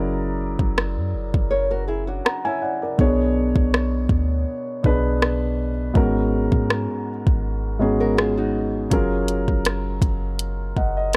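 Smooth and romantic, this contemporary R&B excerpt sets a dark, mellow concert grand piano up front over a deep, boomy 808-style bass, with an electronic drum kit of soft kick, warm hi-hat and rim click joining at 0.6 seconds. A small, fingerpicked nylon-string guitar adds brief tape-echoed arpeggios, finger squeak audible, around 1.5 and again at 8.0 seconds. The sound is dry and gritty, with chords drifting from F#7b13 through Bm6 and G#m11 before settling on F#maj7 at 8.9 seconds.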